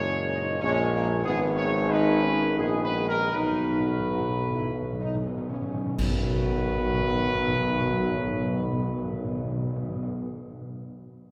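Solemn and triumphant, this classical ceremonial fanfare excerpt in B major and 3/4 slows from about 97 toward 59 BPM as a mellow, vintage-toned trumpet section carries the melody up front over sustained chords from a tight French horn section with light vibrato and a dark, distant trombone section, with a soft-attack tuba holding the bass, round soft-mallet timpani entering at 3.3 s with a fill, and bright clash cymbals with concert bass drum marking a band accent at 6.0 s, all bathed in a wet church reverb.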